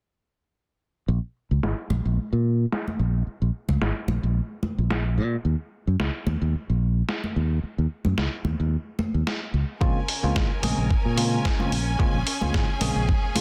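Cosmic and groovy, this nu-disco excerpt moves at 110 BPM with a lightly swung 16th feel, built on an up-front fingered electric bass that enters at 1.1 seconds. It is joined by a dusty sampler-style kit of overdriven, low-pass filtered hi-hat and medium-tuned snare under a filter sweep, with congas set back in a live room. At 9.8 seconds, as the harmony lands on Bbm7, a thumpy overdriven electronic kick arrives alongside a bell-like tine electric piano carrying 12-bit sampler grit, delay and sidechain pumping, and a lush, distant symphonic string section with vibrato that also pumps, all within a dense, heavily limited master and light reverb.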